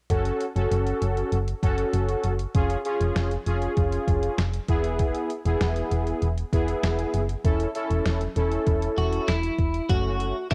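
From 0.1 s, a fat, nasal, detuned synth brass with chorus and cassette-tape grit, a punchy, dark FM bass driven through tube saturation, and a thumpy, sampler-style 8-bit drum machine set up a melancholic, nocturnal synth-pop groove at 98 BPM in F# minor, moving through F#m, C#/E#, E and A/E in a home-recorded cassette ambience, before a clean, compressed twelve-string electric guitar picks out a brief up-front melody at 9.0 s in this fragment of a longer piece.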